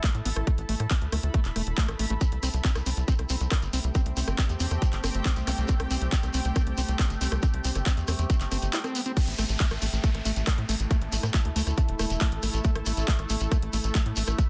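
Psychedelic trance at 138 BPM in A minor, this driving, intense passage is cut from a longer piece and runs on an overdriven, tight electronic kick sitting up front, layered with an overdriven drum kit of crash cymbal, handclaps, bright hi-hats and rim clicks. A punchy sequencer bass with a plucky filtered sawtooth-and-square tone drives underneath, while a squelchy, resonant acid line, distorted with chorus, delay and sidechain pumping, screams in the background. A granular cloud pad hovers blurred and evolving across the whole passage, joined at 3.5 seconds by a resonant drone of moving overtones, and a grainy, mellow shekere enters at 2.2 seconds. The kick drops out briefly before the drop lands at 9.2 seconds, where a downlifter sweeps through the background, following an earlier electronic zap. The mix is dense and heavily limited, with light reverb.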